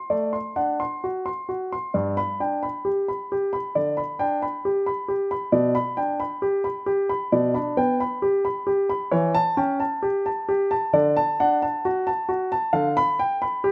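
Classical, a baroque-style suite movement in 4/4, played with a radiant, serene rubato on a solo baby grand piano that sits intimate and up front, its natural tone carrying audible action noise. The harmony moves from D7/A to G and through A7/E and D before landing on G7/D near 12.7 seconds, where this fragment of a longer piece breaks off. A moderate stone-room reverb gives the close piano a gentle halo of space.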